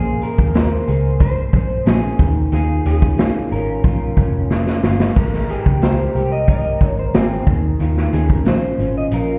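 Nostalgic and sunny, this brief indie and bedroom pop clip sets two slightly broken-up electric guitars, each through a small old amp and bathed in lush chorus, against a Bbm9, Eb9sus4 and Abmaj9 progression, with the compressed, picked lo-fi guitar carrying the melody while the other adds vibrato-tinged accompaniment. Beneath them, a dark, round, foam-muted fingered bass sits up front beside a raw garage drum kit of punchy kick, medium-tuned snare, hi-hat and crash, gritty with vintage 12-bit sampler saturation and a rolled-off top, which enters at 0.2 s and plays a fill at 4.5 s. The whole mix sounds muffled, as if heard through a wall, with a stone-room reverb.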